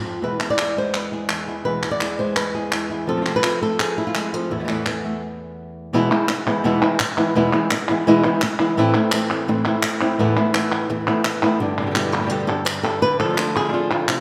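Flamenco with a passionate, fiery mood, this piece drives along at 169 BPM in a straight 4/4, set in E phrygian dominant. Up front, a dark, fingerpicked flamenco guitar carries the melody from its low E2 up to D5, touched by a slapback echo. A second flamenco guitar sits in the background, thumb-plucked and warm, giving chord stabs with an audible finger squeak. Crisp palmas hand claps join at 0.4 seconds, close and lively in the room. The music halts briefly at 5.2 seconds before moving through E, Am and Esus4 and on to G and Dm. A recital hall reverb gives the whole a resonant, live setting, and the passage is cut from a longer piece.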